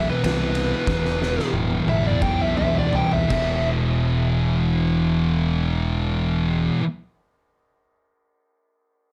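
A dark, fuzz-saturated studio sound opens this short stoner and doom metal fragment, cut from a longer piece at 77-96 BPM, where a compressed fuzz lead guitar with analog delay plays a solo over the first 3.7 seconds as the music slows down, while two thick fuzz guitars grind out a low riff, one of them up front, over a growling overdriven fingered bass. An oversized low-tuned drum kit with a fat snare and punchy kick rolls through a fill before dropping out at 3.5 seconds, and once the solo ends at 3.7 seconds the riff and bass carry the heavy, hypnotic mood.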